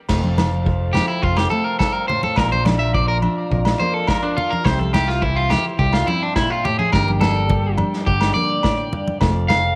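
Cut from a longer highlife guitar band piece in F major at 105 BPM, this warm, danceable passage opens with a punchy kick, a medium-tuned snare and dark crash cymbals from a vintage kit in a pumping small room, alongside ringing agogo bells and hard-handed congas in the background, a round, amped fingered bass, a woody, boxy fingerpicked ladder-braced acoustic guitar on old strings, and soft, flute-like tonewheel organ chords with key click through a slow rotary speaker, before a twangy, slightly broken-up electric guitar enters up front at 0.9 s with picked arpeggios through tape echo, all moving through F, Bb, C and Gm and back to F under light studio reverb.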